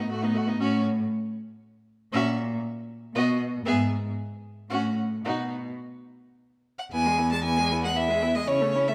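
In a rubato triple metre, this brief, graceful and spirited fragment of a quick classical-period string quartet movement sets a distant, warm first violin melody against a clear, up-front second violin line, a rich viola accompaniment and a focused, up-front cello bass, all bowed with vibrato in a moderate recital-hall reverb, before moving into a new section at 6.9 s.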